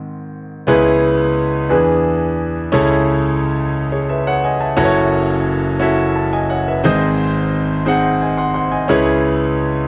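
A natural, up-front concert grand piano with a deep bass sits in a moderate large-studio reverb, carrying this soulful, solemn gospel passage alone, cut from a longer piece. Moving at 58 BPM in a straight 6/8 in C# minor, the solo piano spans from F#1 up to B#5. Its slow progression passes from a G# pickup through C#m7, E7, Amaj7/C# and F#m7, returns to G# at 6.8 seconds, and settles back on C#m7 at 8.9 seconds.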